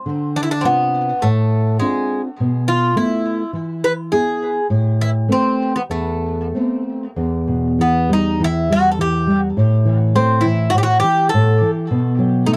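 Passionate and longing, this short fado cut from a longer piece moves at 103 BPM in 4/4 with a rubato feel, opening in A harmonic minor before shifting to E harmonic minor at 7.2 seconds. A nylon-string guitar carries the accompaniment from the start, its dark, woody tone coming from old strings and a thumb-plucked, classical touch that sounds full-bodied and up front. From 0.4 seconds a Greek bouzouki takes the melody, its picked double strings warm and metallic, with some octave-doubled courses and a tape echo coloring its sound. The harmony passes from Dm7 through Esus4 and E to Amadd9, then turns to Em, A5 and B5 in the second part. The sound is a dry, close 1970s-style studio recording with light reverb, keeping both instruments near and intimate.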